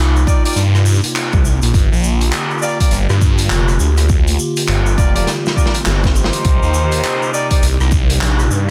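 Swaggering and playful, this glitch hop excerpt swings over a thick, swirling phased saw bass and a punchy electronic kick, while a gritty, saturated garage kit of snare, handclaps, rim clicks, hi-hat and shaker rattles in a small room. A warbling, nostalgic pad holds chorused chords that pump gently, and a tight, vintage horn section fires clear stabs trailed by tape echo, moving from Cm7 to Gm7 and back. A drum fill from 5.3 to 6.5 seconds is shadowed by a very quiet electronic swell, all pressed into a dense, heavily limited modern master.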